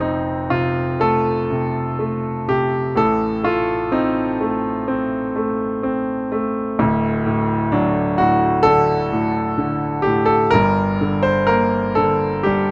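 Rubato phrasing stretches the 4/4 metre in this wistful, reflective passage of lyrical classical solo piano, cut from a longer piece. A clear concert grand plays the whole 12.7 seconds by itself, its deep bass reaching down to D1 and its natural, up-front tone caught by close, detailed microphones in light reverb. The harmony moves from F to A diminished at 3.0 seconds, then through D to G minor at 10.5 seconds.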